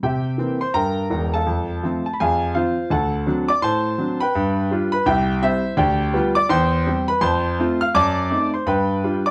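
Playful and exuberant, this stride piano jazz cut from a longer piece swings in 4/4, with a lilting eighth-note feel. A lone grand piano carries the whole passage from 0.0 to 9.3 seconds, ranging from deep bass notes at E1 up to bright F6 in the treble. Its tone is clear and present, sitting up front with a long, ringing sustain. The harmony moves briskly from C7 through F and Fm to D7 and G7, then passes through an F#dim7 before landing on G7 at 8.7 seconds. A moderate club-sized reverb gives the piano a sense of room around it, while the overall production leans dark and warm, and the instrument is tuned to A4 = 436 Hz.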